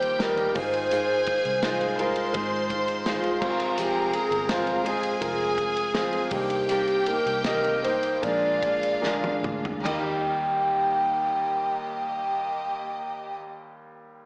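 A straight 4/4 pulse carries this uplifting, hopeful piano-driven pop fragment, cut from a longer piece, and the tempo gradually slows from 3.8 seconds. An intimate upright piano with woody tone, audible action noise and long sustain anchors the accompaniment. An airy alto flute with a crisp attack and vibrato sings the melody, alongside a smooth, even bowed violin section playing a second line. A full-bodied, fingerpicked steel-string jumbo guitar, with the odd finger squeak, plays a riff in the background, and both guitar and violins carry a slapback echo. A dark, round, foam-muted electric bass sits low, while a punchy studio drum kit with bright cymbals plays a fill at 9.0 seconds and stops at 10.1 seconds as the music settles back on the home chord. A lush hall reverb blends with a small room, giving a sound that feels at once like a big arena and a small speaker.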